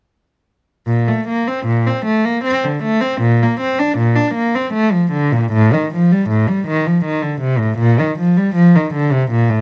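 A single bowed cello enters at 0.9 s with a soft attack, playing a serene, dance-like, baroque-style suite movement in Bb major, in 3/4 at 78 BPM with a flexible rubato feel. The warm, expressive tone carries vibrato and gliding portamento across a range from A2 to D4. The close, detailed recording places the cello up front in light reverb, and this fragment of a longer piece ends at 9.6 s.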